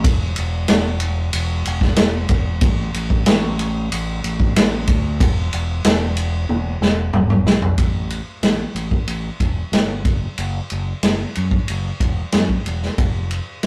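A vintage acoustic drum kit leads this hazy, hypnotic psychedelic rock fragment, its punchy kick, medium-tuned snare, toms and dark ride cymbal sitting up front with a rolled-off top in a small, natural room. A growling, overdriven fingered electric bass, bright and direct, holds the low end beneath it, and a drum fill from 6.5 seconds carries the piece into a new section at 7.8 seconds. The rough rehearsal-room sound has light reverb and a saturated warmth, and the recording is cut from a longer piece.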